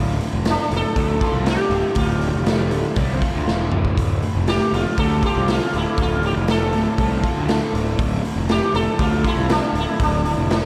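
Hypnotic and dark, this excerpt of psychedelic rock moves at 119 BPM in D minor, resting on a single D minor chord as a bright, overdriven semi-hollow guitar with flanger plays a double-tracked riff over a fuzz-laden electric bass. A gritty, saturated garage drum kit sits up front with a punchy kick, pumping room sound and a drum fill at 3.5 seconds, while a mellow, buzzing sitar enters at 0.5 seconds carrying the melody through a diffuse ambient delay, its sympathetic strings shimmering. The whole mix is dreamy and soaked in a vast cathedral reverb.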